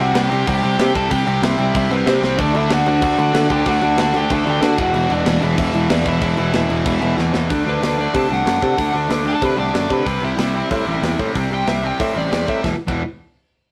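A rough rehearsal-room recording with moderate reverb captures an angry, urgent punk rock excerpt, where an up-front distorted electric guitar and a very quiet crunchy overdriven guitar play riffs over a direct picked bass and a tight metal drum kit with a rolled-off top, a bright double-tracked fuzz guitar joins from 2.4 to 7.5 seconds, and a biting overdriven guitar carries the melody before taking a solo from 7.5 seconds.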